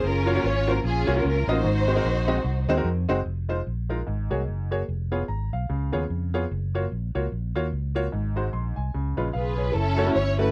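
This dry, close recording has a 1970s studio character, with little reverb and every part sitting up front. It is an uptempo gospel piece in Db major at 148 BPM in 4/4, swung on the eighths, and its mood is hopeful and uplifting. A lush, bowed string section with a dark tone and expressive vibrato carries the melody from 0.0 to 2.9 seconds, then returns at 9.3 seconds. A round, amped fingered electric bass holds the low end throughout, and a clear baby grand piano with short sustain enters at 0.3 seconds to provide accompaniment. The harmony moves through rich seventh and suspended chords such as Gbmaj7, Ab9sus4 and Db7 before landing on F#m7 near the close of this fragment of a longer performance.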